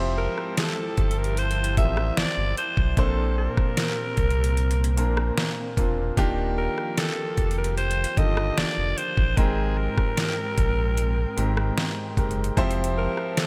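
Contemporary R&B at a relaxed 75 BPM, tender and dreamy, where a raspy, gritty alto saxophone with vibrato and delay sings the lead over a warm grand piano with audible action noise, a deep sine-like sub bass, an ethereal chorused pad drifting in the background, and an electronic drum kit with a knocking kick, deep snare and metallic hats, moving through Fmaj9, Bbadd9, Ebmaj9 and Abmaj9 in a bright 1980s-style digital production with light reverb.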